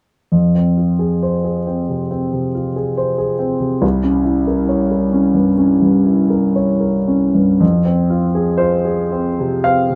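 Classical romantic nocturne for solo piano in F minor, mournful and melancholic, with a slow rubato pulse in 4/4 at 52-70 BPM and tuned to A4 = 439 Hz. In this short passage cut from a longer piece, a polished, up-front grand piano spans C2 to F5 over light reverb, moving from Fm to a tense C7b9 at 3.8 seconds before settling back on Fm at 7.6 seconds as a new section begins.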